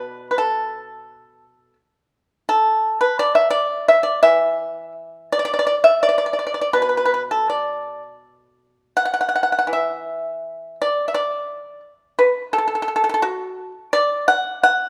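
A solo pipa, mellow yet percussive under fingerpicks and placed up front, carries this serene, pastoral Chinese traditional excerpt in a free rubato, its dry attack ringing into a moderate recital-hall reverb as the music moves into a new section at 8.2 seconds before the clip ends at 14.9 seconds.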